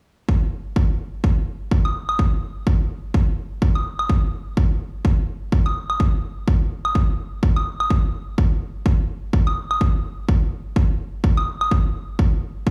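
Heard through a big sound system in a bare room, with large studio reverb and a touch of small-room ambience, this bass house excerpt has an aggressive, bouncy edge at 126 BPM in 4/4, swung at 57% on the sixteenths. A punchy, overdriven electronic kick sits up front from 0.3 seconds, and a layered, distorted woodblock joins it at 1.9 seconds, carrying the same large-room character until it drops out at 11.7 seconds.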